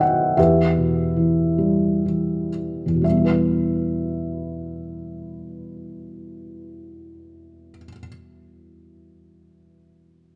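Moving in a rubato 6/8, with a dotted-quarter pulse between 38 and 55 BPM, this lyrical classical passage for solo piano slows down over its first 3.0 seconds before moving into a new section. Cut from a longer piece, it sits in E minor, tuned to A4 = 442 Hz, and an E minor chord sounds at 0.4 seconds. A felt-muted upright piano plays alone throughout, spanning E2 to G5; its thick felt gives a soft, mellow, vintage tone, with audible action noise and an intimate, up-front presence. The mood is wistful and dark. A moderate concert hall reverb with a 1.9-second decay surrounds the instrument, and the overall production is dark and warm.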